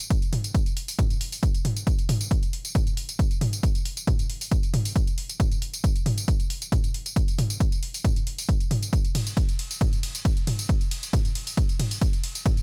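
Techno at 136 BPM in a straight 4/4, hypnotic and driving, this cut from a longer piece pairs a punchy, up-front electronic kick drum entering at 0.1 s with a tape-warm analog drum machine playing hi-hat, ride cymbal, tambourine and toms that pump under sidechain compression and trail tape echo, all in a dry, echo-heavy mix.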